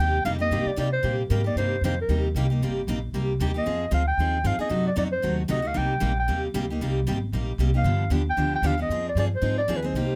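A breathy, mellow clarinet carries the melody up front in this short excerpt of acoustic string swing in the gypsy jazz tradition, its scooped notes, vibrato and soft attack giving the line a bittersweet, jazz-inflected voice between Bb4 and G5. Beside it, a bright, full-bodied steel-string acoustic guitar plays picked accompaniment, its fresh strings and audible finger squeak sitting just as close to the listener. A woody pizzicato upright bass anchors the low end from G1 to C3. The tempo is a brisk, virtuosic 229 BPM in 4/4 with a light swing, in C minor, moving from Cm7 through Fm7 and F#dim7 before reaching G7 at 7.9 s and Fm7 at 8.9 s. The parts play together from 0.0 s to about 10.2 s, captured with close, detailed microphones and a touch of light reverb.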